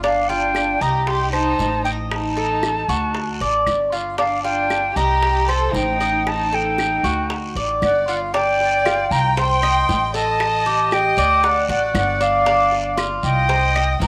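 A distant, airy concert flute carries the melody with expressive vibrato through this sultry 116 BPM excerpt of Cuban son and guajira in G minor, over a close, soft-attack chamber violin section bowing a second line and a mellow, metallic Cuban tres picking arpeggios on its double strings. A dark, thumpy upright bass with gut strings anchors the low end, while tight high-tuned bongos and woody claves, the latter entering at 0.6 seconds, sit in the background, joined by a raspy, band-limited guiro. The small room's light reverb gives the whole a cozy, intimate feel, with the harmony circling through G5, Cm and D across both sections.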